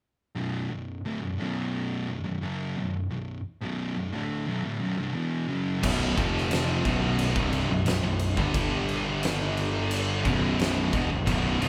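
Recorded live by a band in one room with light reverb, this ominous, hypnotic stretch of stoner and doom metal moves at 88 BPM in a straight 4/4 and is cut from a longer piece. It opens at 0.4 seconds with two distorted, picked fuzz guitars playing a riff over B minor, one dark and thick, the other warm, both sitting in the background. At 5.8 seconds the full band comes in. A bright, double-tracked high-gain guitar joins the riff, with a growly overdriven fuzz bass and an oversized, low-tuned acoustic drum kit placed up front. The kit has a boomy kick, a fat snare and crash cymbals in a pumping stone room. The riff then works through B5, F5 and G5 power chords, returning to B5 before the recording ends at 11.7 seconds.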